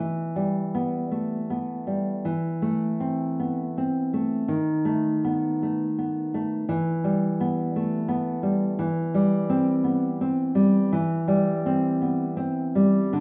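Romantic solo classical guitar in E minor, intimate and melancholic, moving at a slow 55 BPM in a rubato 6/8 with uneven beats, as a dark, thumb-plucked nylon-string guitar sits up front in the low register through chords from Em to Am/E, B7/D#, back to Em and onto Cmaj7/E, bathed in a wet recital hall reverb across this 13.2-second cut from a longer piece.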